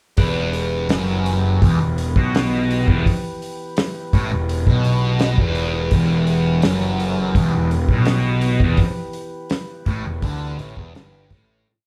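This short psychedelic rock piece has a hypnotic, dark mood, and the whole band starts together at 0.2 s on an E minor chord. Up front, a thick, double-tracked fuzz guitar plays a distorted single-note riff coloured by a phaser. Beneath it, in the background, a punchy picked electric bass with overdriven fuzz plays a syncopated riff that doubles the guitar. The cloth-damped drum kit is thuddy, dry and up front, with a fat snare, tight kick, hi-hat and a rolled-off top driving a big rock groove. A mellow, round tonewheel organ holds sustained chords as a pad, with key click, third-harmonic percussion, light overdrive and a slow rotary speaker. The band plays live in one large studio room with moderate reverb, and the sound fades out from 8.8 s to the end at 11.7 s.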